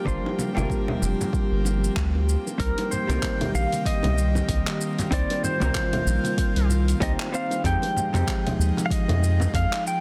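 A short cut from a longer sunset chillout track in C minor, this opens at once on a bright pedal steel guitar carrying the melody with fingerpicked, slide-drawn volume swells, beside a dark, clean hollow-body jazz guitar playing accompaniment, both touched by tape echo. An airy, breathy pad with a noise layer and chorus holds sustained chords beneath them, fading in slowly and lingering on a long release. The mood is warm and relaxed, at 95 BPM in 4/4 with a light swing on the sixteenths. Up front sits a round, deep analog bass with a fast attack, while an overdriven electronic kick and a layered deep house kit of congas, handclaps, hi-hat and shaker, re-recorded in a small room, drive the groove. Vintage, band-limited bongos and congas played with hard hands sit in the background, and the harmony moves from Gm7 to Cm7 at 2.6 seconds and on to Fm9 at 7.6 seconds. Light digital reverb surrounds a dense, heavily limited modern master.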